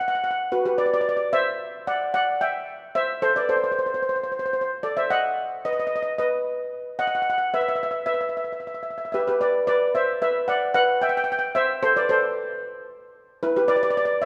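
A lone steel pan opens this calypso fragment in E minor at 112 BPM, its metallic, shimmering lead voice sitting up front and ranging from E4 to G5 in a steady, straight 4/4. The mood is cool and bittersweet, with the harmony moving through chords such as Dsus2, Am, B and a rootless G6 before the phrase begins again at 9.7 seconds. A long concert-hall reverb lends the airy pan tone a spacious glow.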